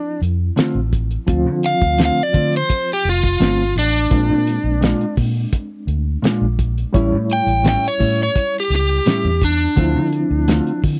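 Soulful and brooding, this straight-eighth soul blues moves at 85 BPM in 4/4, in D minor, in a short cut from a longer piece. An overdriven semi-hollow guitar carries the melody up front from the very start, its picked hollow-body tone sitting between D4 and G5, while a reedy electric piano with fast tremolo sits in the background through its built-in speakers. At 0.2 seconds a round, foam-muted fingered electric bass and a cloth-damped, thuddy drum kit join, the kit giving a fat snare, tight kick and hi-hat with a muffled, gritty, rolled-off top. A dark, clean, compressed electric guitar adds fingered stabs bathed in spring reverb from 0.6 seconds. The harmony moves from Dm7 to Bb7 and A7 before returning to Dm7, all captured as a dry, close 1970s-style studio recording.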